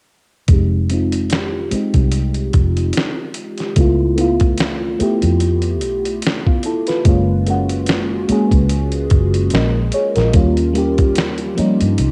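A slow 73 BPM groove in 4/4 with a light 16th-note swing sets an introspective, sultry neo-soul R&B mood in this short cut from a longer piece, with all three parts playing together from 0.5 to 12.1 seconds. The dusty sampler-style drum kit sits up front with a thumpy kick, fat snare and hi-hat, its compressed, gritty sound carrying a cassette-tape grain and the air of a large room it was re-recorded in. Beneath it, a vintage electric bass played with fingers and foam-muted gives a dark, round, amped tone with transformer saturation, moving between F1 and G2. The FM electric piano, layered with a soft pad, is lush and dreamy, with a fast attack, decaying notes and a noise layer, colored by chorus and phaser while a low-pass filter sweep runs across its whole span. It voices the chords Fm9, Db7alt, Gbmaj7 and Eb7, with the harmony changing roughly every three seconds. The overall sound is dry and intimate, like a home recording on cassette.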